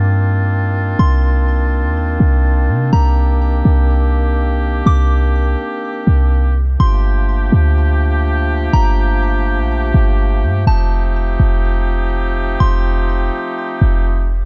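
A smooth woodwind section holding sustained chords with light vibrato opens alongside a deep, boomy 808-style bass at the start of this hazy, ethereal cloud-rap excerpt in G minor, moving at 124 BPM with a half-time feel over Cm11, Gm9 and F9 harmonies, while from 1.0 seconds a delicate, tinkling FM synth bell with chorus, delay and a low-pass filter warbles faintly in the background of a dark, warm mix.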